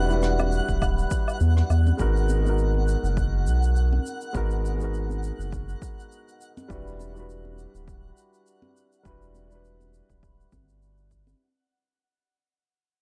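A dark, mellow grand piano with tape echo, a round, up-front analog bass with tube saturation and a sparkling granular texture with its own reverb open this wistful, relaxed sunset chillout fragment in a lightly swung 4/4, joined within the first second by smooth, rolled-off shaker, rim click and woodblock, bright compressed congas in the background and a punchy layered electronic kick, captured dry and gritty in a small room as the chords move from Em9 to G#m9 and back to Em9 under a fade-out.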